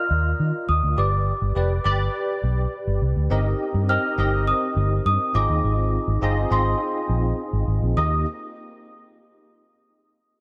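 A punchy, foam-muted vintage electric bass sits up front with a round, dark, amped tone, anchoring this uplifting, glossy 1980s-style pop passage cut from a longer piece. Above it, a barky, bell-like tine electric piano plays clean, direct accompaniment through an ensemble chorus, while a delicate, sweet celesta carries the high melody with airy delay and the sound of hard felt hammers. The harmony moves from Ebsus2 through G, Cm7/G and Ab6 before landing on Eb at 8.0 seconds, all within a dark production and light reverb.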